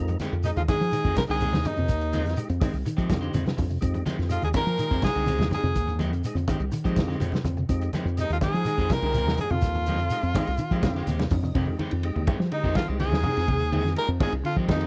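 Defiant and intense, this afrobeat groove has an edgy, forceful tenor saxophone carrying the melody over very quiet second lines from a raspy baritone saxophone and a scooped trumpet, while a round, punchy fingered bass sits up front beside a muffled vintage drum kit, low-tuned congas, a grainy shekere that drops out at 11.6 seconds, twangy slightly broken-up guitar stabs with spring reverb, dark clean guitar arpeggios through a phaser, and a lightly overdriven tonewheel organ with fast rotary speaker that plays a fill from 10.6 seconds, all captured in a dry, close 1970s-style studio sound.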